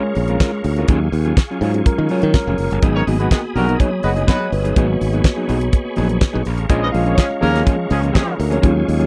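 A clean tine electric piano takes the solo in this sultry, danceable disco fragment at 124 BPM, moving through Bbm7, Ebm11 and Abm7 over a dark, fingered electric guitar, a soft tonewheel organ with key click, chorus vibrato and fast rotary speaker, a bright, growly, punchy fingered bass, and a damped 70s drum kit with a fat snare and tight kick up front, while a vintage horn section adds clear stabs with octave doubling from 3.0 to 8.3 seconds, set in a close, dry 1970s-style studio sound.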